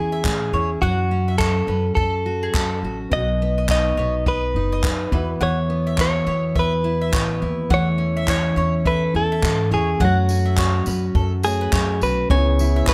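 A clean, compressed electric guitar carries the melody up front over a full-bodied picked acoustic guitar, thumpy pizzicato upright bass and a brushed drum kit with boomy kick, handclaps and tambourine, while bright mandolin arpeggios shimmer above, a boxy upright piano joins in the background at 3.1 seconds and a round tonewheel organ slips in at 12.3 seconds, giving this wistful, reflective acoustic pop excerpt with a gentle swing a light touch of reverb.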